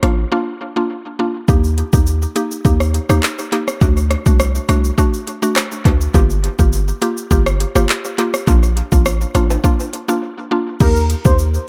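A boomy, deep 808-style bass sits up front beneath a woody, round mallet-like synth pluck and an electronic afro-pop kit with a deep kick, metallic hats, handclaps, rim click, shaker and crash in this hypnotic, sultry dancehall excerpt at 103 BPM, where an echo-heavy mix carries delay on the pluck, drums and a background layer of bright acoustic egg shaker and timbales entering at 1.5 s, chords move from Bb through Eb, D and Gm7, breaks fall at 0.3 and 10.2 seconds, and a velvety, detuned synth lead with vibrato appears briefly at 10.8 s.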